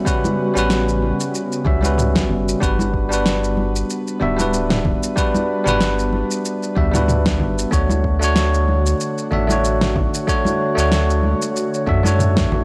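Dry, gritty and cassette-worn, this relaxed sunset chillout excerpt in D major moves at 94 BPM with a light 16th-note swing, as a bell-like tine electric piano with analog delay sits up front over a breathy chorused pad, a deep electronic kick and fat-snared house kit with shaker and toms, soft-handed congas in the background, and a round sub bass with tube saturation entering at 0.6 seconds, all under chords moving from A13 to Gmaj7 at 2.6 seconds and Dmaj7 at 7.7 seconds.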